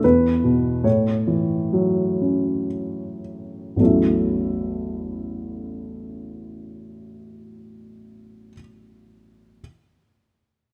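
Peaceful and intimate, this lyrical classical solo piano excerpt in A major drifts in a rubato 3/4 between 53 and 78 BPM, slowing through its opening 3.8 seconds over E5 and A6 harmonies before a new section begins, with a dark, mellow grand piano sitting up front in a light reverb, its boxy tone, short sustain and audible action noise giving the playing a close, private character.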